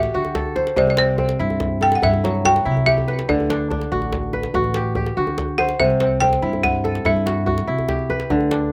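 Hypnotic and sun-warmed, this short cut from a longer piece of West African traditional string and xylophone music rolls along in a steady, straight 12/8, with a woody, buzzing balafon carrying the melody under hard rubber mallets and a slapback echo, falling silent after 7.6 seconds. Up front, the fingerpicked kora rings out crisp arpeggios, while a pizzicato upright bass on steel strings adds a warm, woody low end. A tight, cracking djembe, compressed and saturated, keeps time and throws in a brief fill from 2.8 to 3.3 seconds, all captured dry in the open air.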